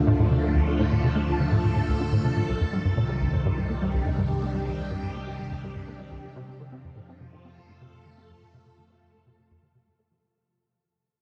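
A swirling, bright string machine, treated with ensemble chorus and phaser, holds sustained chords over a deep, round sine sub bass in the background from the very start, joined at 0.1 seconds by a punchy, funky analog bass riff roughened with vintage 12-bit sampler grit, ensemble chorus and tape echo and shaped by a filter sweep, as this cosmic, hypnotic fragment of sequencer-driven ambient space music moves through Dm, Cmadd9 and F inside a huge, dark reverberant space while fading out across its 10.2 seconds.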